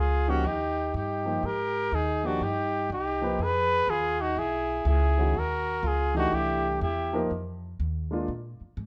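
A mellow trumpet leads this late-night, moody swing jazz fragment, its soft-attacked, vibrato-laden melody sitting up front. Beneath it, a clear, breathy alto saxophone carries a second line in a lower register, and both horns drop out at 7.3 seconds. A woody, steel-strung upright bass, plucked and also placed up front, anchors the low end through the whole cut, while a dark grand piano enters at 0.3 seconds to accompany through rich harmonies such as Abmaj9, Fm7b5 and C7, falling silent at 8.3 seconds as the harmony settles on a bare Bb5. Light reverb gives the small group a gentle sense of space, and the passage is a section lifted from a longer piece.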